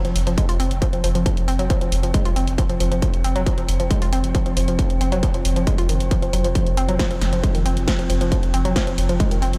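A distorted, layered electronic kick drum entering at 0.4 s anchors this hypnotic, industrial excerpt of driving peak-time techno at 136 BPM over an F5 chord, joined by a thick, tube-saturated sub bass holding F1 through a low-pass filter, a woody wave-folded pluck riff from Eb3 to F4 with chorus and tape echo, overdriven analog hi-hat and punchy snare re-recorded in a large room like the kick, and an eerie, nasal, metallic FM drone warbling in the background, with sidechain pumping on the pluck, bass and drone under light digital ambience.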